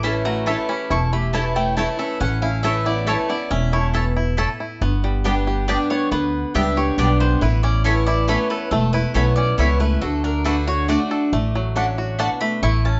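A dark, lightly reverberant production frames this joyful, rustic bluegrass passage, cut from a longer piece, moving at 138 BPM in a straight 3/4 in A mixolydian over chords of A, G, Aadd9 and D. A woody, double-strung mandolin carries the melody, while a second, brighter mandolin adds stabs until 12.3 seconds. A twangy, percussive banjo plays arpeggios, and a picked steel-string acoustic guitar with an auditorium tone fills out the accompaniment; up front, a thumpy pizzicato upright bass anchors the low end, and a metallic, nasal lap resonator guitar played with slide and fingerpicks sits in the background with a second line that stops at 3.9 seconds.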